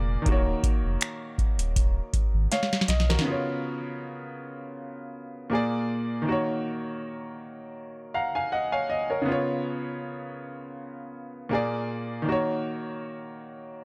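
Contemporary R&B in Eb minor at a slow 80 BPM, this sensual, late-night fragment moves with a light sixteenth-note swing over minor-seventh and dominant-seventh harmony. A clear, slightly worn grand piano carries the accompaniment up front throughout, and a round, mellow sub bass with a sine-like tone anchors the opening bars. An overdriven analog drum machine enters at 0.3 seconds with a deep kick, crisp snare, metallic hi-hats and finger snaps, then closes with a drum fill. After 3.4 seconds the piano plays alone, adding a fill of its own at 7.8 seconds as the chords cycle again back to Ebm7. A digital ambience surrounds the sound.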